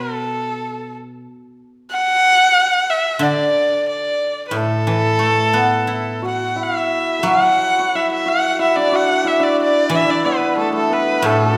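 Pastoral and graceful, this Chinese traditional chamber piece in A zhi mode moves at 91 BPM in a straight 4/4, with a rich, close, bowed erhu carrying the melody up front with vibrato and portamento over a bright, silvery fingerpicked guzheng accompaniment, joined at 6.2 s by a shimmering hammered dulcimer second line, all set in a wet recital-hall reverb and cut from a longer piece.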